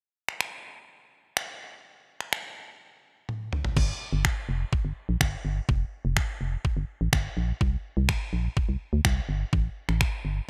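A detuned, 8-bit digital drum machine opens this confident, driving dance-pop excerpt at 0.3 seconds, its thumpy kick, finger snaps, toms and crash cymbal sitting up front with a sampler-style, tape-warm character and a gated reverb on the hits. The groove moves at a straight 125 BPM in 4/4, and a drum fill at 3.3 seconds leads into the next section. At 3.8 seconds an organ-like FM bass enters, hollow and dark, with a fast attack and a decaying tail, giving its low notes between F1 and D2 a percussive bite. The bass pumps through sidechain compression and stays prominent alongside the drums. The overall production is bright and mostly dry in a 1980s digital style, and the passage is cut from a longer piece.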